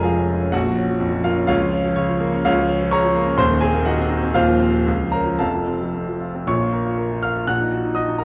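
In a rubato 2/4 at 110-128 BPM, this stormy, agitated passage from a longer virtuoso piano study in Bb minor is played by a solo concert grand piano from 0.0 to 8.2 s, heard clear and up front with deep bass and audible action noise, ranging from Eb1 to Gb6 in a wet recital hall reverb under a worn, warbling cassette-tape pitch drift, moving from Bbm through Cm7b5/Eb and F before a new section begins at 6.5 s.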